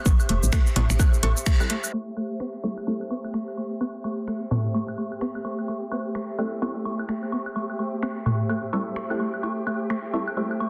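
A punchy, tape-warm electronic kick and a round, woody FM bass open this clinical, hypnotic minimal techno excerpt at 128 BPM in A minor before dropping out by 1.6 seconds, leaving a twangy, string-like resonator pluck riff with tape echo, an airy, breathy pad, metallic hats with finger snaps and shaker, delayed electronic woodblock and toms, and muted, detuned dub chord stabs, with the pluck and pad pumping to the sidechain over a filter sweep from 1.9 seconds, while a flickering, grainy texture drifts in behind at 2.5 seconds within a lush hall reverb.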